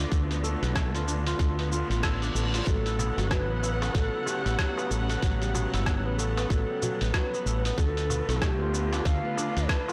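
Earthy and warm, this short organic downtempo passage moves at 94 BPM in 4/4 with a swung sixteenth-note feel, sitting in A mixolydian. A clear, focused string section holds bowed, vibrato-laden chords with sidechain pumping, while a ringing, fingerpicked kora spins arpeggios through tape echo. Underneath, a woody fretless electric bass sits up front, growly and round with tube saturation and the same pumping breath, beside a tight electronic kick and a gritty, tape-warmed sampler-style kit of cabasa, hi-hat and rim click, its snare softly clipped. A reverse cymbal sounds in the background from 1.7 to 2.7 seconds, handing off to a reedy cedar flute whose pure, tongued vibrato lines drift through tape echo from 2.7 seconds as the harmony shifts from Dm6 to A13. A crisp metal-shell darbuka, played with soft hands, joins distantly from 3.0 seconds, and the whole recording carries light reverb and a blown-out, overdriven edge.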